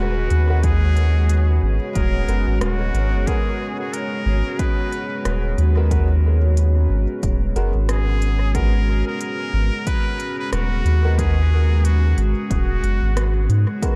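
A swung sixteenth-note groove at 91 BPM in 4/4 drives this meditative ambient dub passage in G# minor, cut from a longer piece: a punchy, overdriven electronic kick arrives at 0.6 s, while a tape-toned kit of smooth hi-hats and rim clicks, treated with dub echo, sits in the background from 0.3 s. A round, soft sub bass sits up front beneath a dark, detuned pad holding a G#m7 chord, its slow-attack sawtooth layers thickened with chorus and reverb. Woody upright piano stabs bathed in lush chorus and echo flicker behind a brilliant, nasal muted trumpet that sings a classical-style melody with vibrato and dub echo until 13.5 s, all in a light digital ambience.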